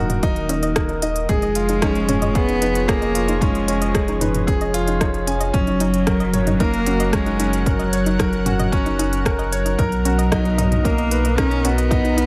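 Piano and strings electronica at 113 BPM, hypnotic and cinematic, where an expressive bowed cello sings a melody with vibrato over a clear, up-front concert grand piano riff, a lush, detuned unison pad with chorus, a deep sine sub bass with tube saturation and sidechain pumping, soft round pluck arpeggios with tape echo, a punchy layered electronic kick and an overdriven electronic kit with crisp hats, rim clicks and toms, moving through Ebm, Db7/F, Gb and Bmaj7 in light reverb.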